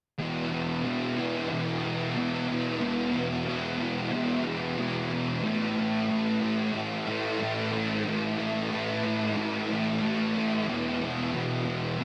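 Drenched in a lush hall reverb with a long 2.7-second tail, this dreamy, brooding rock fragment, cut from a longer piece, has a soaked, hazy sound. A single thick fuzz guitar carries the whole passage, playing alone from 0.2 to 12.0 seconds and sitting up front in the mix. The electric guitar is picked and double-tracked, its distorted tone given extra body by ensemble chorus and delay. It stays in a low, heavy register, moving from E5 to A5 at 5.4 seconds and back to E5 at 10.7 seconds. The straight 4/4 feel and the saturated power chords give the moment a moody, suspended weight.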